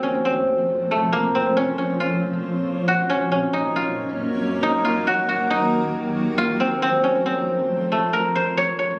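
Melancholic and eerie, this half-time hip hop fragment at 137 BPM, cut from a longer piece, pairs a silvery, fingerpicked guzheng melody, ringing and up front through a low-pass filter and tape echo, with a blurred, detuned granular cloud pad holding slow-attack sustained chords under its own built-in reverb. The harmony moves through F, Bbmadd9, Gb and Ebm before returning to F, and when the pad stops at 8.1 seconds the guzheng carries on alone until 9.0 seconds. It was captured on a phone in a small room with light reverb, club reverb and compression.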